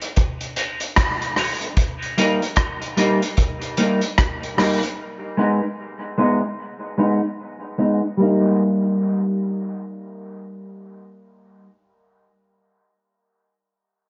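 A clean, picked semi-hollow electric guitar sits up front in this laid-back, hazy dub reggae fragment, its hollow-bodied tone colored by subtle chorus, high-pass and low-pass filtering, dub echo and a filter sweep through the first 8.2 seconds as it moves between Abm and Eb in Eb major. A vintage drum kit with a punchy kick, rim click and hi-hat plays at a swung 75 BPM in 4/4, sounding warm and rolled-off in a small, pumping room before stopping at 5.0 seconds. A moderate plate reverb and a dark, muted top end add to the drowsy atmosphere, with tuning set slightly low at A4 = 438 Hz, in this short section cut from a longer piece.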